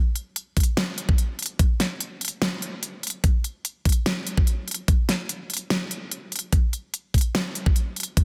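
A pop drum kit opens this bright, playful future bass cut at 0.2 seconds, its crisp hi-hats and fat snare sitting up front with a layered, produced electronic sheen. A knocking electronic kick joins at 0.6 seconds, also forward in the mix, and both parts carry the half-time 146 BPM groove in 4/4 with a light 16th-note swing through to 8.2 seconds. Light reverb surrounds the drums, and a dense, heavily limited modern master shapes this short fragment of a longer piece.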